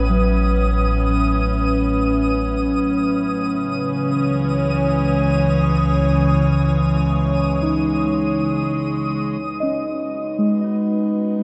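Ambient music in free time, serene and melancholic, heard as a fragment cut from a longer piece and set in a vast, echoing space with a long cathedral-like reverb. An evolving wavetable pad sits up front, its detuned, morphing chords bright and slow to bloom, with chorus and a long release. Muted, felt-like synth keys play soft, intimate arpeggios that decay after a fast attack, colored by chorus and tape echo, while a deep, ominous drone rumbles underneath with a wave-folded edge. A twinkling granular texture adds an octave-up shimmer high above, and a hand-pumped harmonium breathes a reedy, very quiet drone throughout. The harmony moves from Aadd9 to C#m at 3.4 seconds, and at 9.4 seconds the bass drone and granular sparkle stop as the music shifts to G#m7, leaving the pad, keys and harmonium to close the passage.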